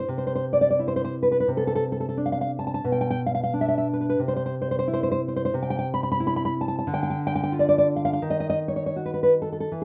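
A passionate, melancholic romantic piece for solo classical guitar in a flexible rubato 2/4, its dark, thumb-plucked nylon-string guitar sitting up front with a deep acoustic tone, moving from C through F6/C and Bdim to Dmadd11 and D#m7b5 within this short cut from a longer work, heard in a rough home demo mix with moderate studio reverb.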